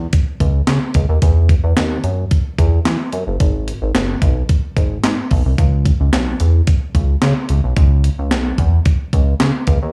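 A light studio reverb frames this short cut from a longer early-eighties boogie funk track, with both parts sitting up front in the mix. A chorused synth bass carries the groove from 0.0 seconds, its glossy, nasal tone built from pulse and sawtooth waves with pulse-width modulation, a moving notch filter and a plucky, fast-attack envelope that still sustains, ranging from F#1 to E3. Beside it, a clean 12-bit digital drum machine with a sampler-style character lays down a thumpy kick, a medium-tuned snare, hi-hat and handclaps, sounding as though it was re-recorded in a large room. The pulse is straight 4/4 at 110 BPM in C# minor, tuned to A4 = 442 Hz. The mood is funky and late-night, with a retro, electronic sheen over the whole passage.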